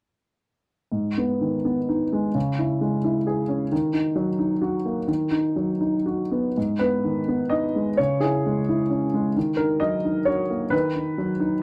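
Wistful and intimate, this short excerpt of neoclassical minimalist piano moves in a rubato 3/4 at roughly 114-136 BPM, in G# minor with the tuning set to A4 = 441 Hz. A dark baby grand plays alone from 0.9 s to 11.6 s, staying between G#2 and D#5. Its tone is mellow and a little boxy, with a short sustain and the clatter of the action audible beneath the notes. The harmony cycles through G#m, C#m, D#m and B/D#, then begins the same progression again at 6.6 s. Close, detailed miking keeps the piano up front in a dry, nearly reverb-free space, so the performance feels private and near at hand.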